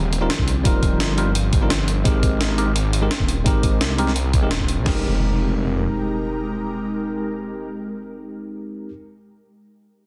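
Liquid drum and bass at 171 BPM in F minor, this lush, soulful excerpt from a longer piece moves through Eb69 and Abmaj7 before settling on Fm11 at 4.9 seconds. An ethereal, airy pad sits in the background with chorus, phaser and sidechain pumping, while a bell-like tine electric piano carries clean, direct accompaniment through phaser, low-pass filter and tape echo across the whole passage. A menacing, detuned saw bass with a filter swell and tube saturation sits up front, stopping at 5.9 seconds. Two pitched-up, gritty breakbeat sampler-style drum kits, re-recorded in a large room, supply hi-hat, crash, a high-tuned snare and a thumpy kick until about 4.9 seconds, when an electronic impact enters. The mix carries light digital ambience and a dense, heavily limited modern master.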